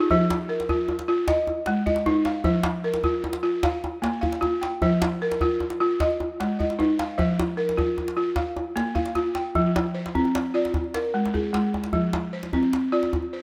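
Hypnotic and flowing, this West African traditional fragment moves at 101 BPM in a straight-feel 12/8, with a woody, buzzing balafon played with rubber mallets spinning up-front arpeggios in F dorian across a span from F3 to G5. A medium-tuned acoustic djembe sits close beside it, and the harmony rocks between F and its neighbours before a second section opens at 9.6 seconds and brushes past an Absus2 chord. A lush hall reverb surrounds the rough, home-demo sound, and the piece is cut from a longer performance.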